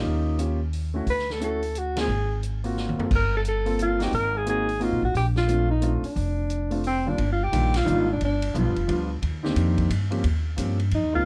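Small-group swing and bop jazz in a brisk 3/4 at 177 BPM, this sophisticated, relaxed excerpt from a longer piece moves from Bb major into Eb major at 7.2 s, with lush extended chords under a mellow, subtone alto saxophone melody full of scooped notes. An intimate concert grand with audible action noise and long sustain supplies accompaniment, while a woody, thumpy pizzicato upright bass on gut strings sits up front. A distant, roomy drum kit with dark cymbals and a boomy kick enters at 0.4 s and adds a short fill around 2.8 s, and the band hits accents at 1.9 s and 7.7 s, all in a dark production with light reverb.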